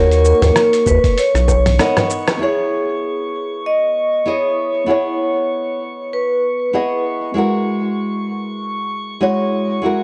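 A ringing, metallic vibraphone carries the melody from the opening moment over a full-bodied, fingerpicked nylon-string guitar, both touched with tape echo, while a round analog bass sits up front and a glassy, drifting texture hovers high above with chorus and its own reverb. This relaxed, wistful sunset chillout moves at 97 BPM in 4/4 with a gently swung sixteenth feel in C# dorian, the chords stepping from D#m7 to Bmaj9 and then C#m7 before an F#9 arrives near the close. A dusty, sampler-style kit of hi-hat, rim click, shaker and toms, gritty and overdriven with muffled tops, joins alongside tight, high-tuned bongos tucked in the background, and a thumpy electronic kick punches in briefly around 0.9 seconds. The bass drops out at 1.8 seconds as a drum fill leads into a band accent, after which the rhythm parts stop at 2.4 seconds and the guitar, vibraphone and shimmering texture carry on, the vibraphone finishing at 7.0 seconds. 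The whole mix has a dry, lo-fi character, with cassette and transformer saturation and a dulled, rolled-off top end under light reverb, in this cut from a longer piece.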